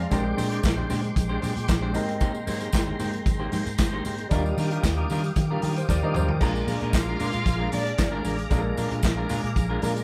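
A band playing live in one room fills a moderate studio reverb, with a vintage drum kit up front, its punchy kick, medium-tuned snare and dark cymbals pumping in a small room. This is a sultry, danceable disco cut from a longer piece, moving at 114 BPM in a straight 4/4 through Bb13, Abmaj9 and Ebmaj9 before landing on Bb7. A foam-muted, round fingered bass anchors the low end, while a clean, hollow-bodied semi-hollow electric guitar and a clear baby grand piano, its action noise audible in the background, fill out the accompaniment. A percussive tonewheel organ holds sustained chords through chorus vibrato and a slow rotary speaker, and handclaps, a jingly tambourine and very quiet, dry congas add lift. After a drum fill at 5.9 s, the groove shifts into a new section at 6.4 s, where a dark, woody, lush string section enters with a bowed second line from 6.7 to 8.2 s.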